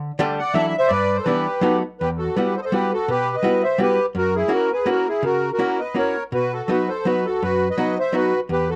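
A reedy, sweet accordion with light tremolo tuning carries the melody up front from 0.4 seconds, set over a clean, compressed hollow-body archtop guitar whose picked electric accompaniment sits slightly lower in the mix. This bittersweet, nostalgic musette excerpt moves in a rubato 3/4 at 166 BPM in E harmonic minor, opening on Dsus4, Dadd9, G6 and B7 before settling on Emadd9 at 2.0 seconds and moving through F#7 to B. Light reverb and a dark production with a faint mains hum lend the short fragment a gently aged, intimate sound.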